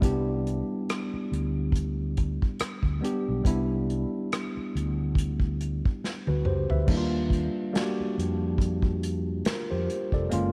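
Light reverb gives this short neo-soul and R&B cut a soft space, with an up-front, airy acoustic drum kit played with bundle sticks across crash, hi-hat, tight kick, rim click, medium-tuned snare and toms, and a drum fill from 6.0 to 6.9 seconds. A worn, slightly out-of-tune tine electric piano, lightly overdriven through its built-in speakers, sits forward with Cmaj9 before shifting to D#maj9 at 6.9 seconds. A round, amped fretless electric bass with analog chorus underpins the soulful, warm mood at a relaxed 70 BPM with a gentle sixteenth-note swing.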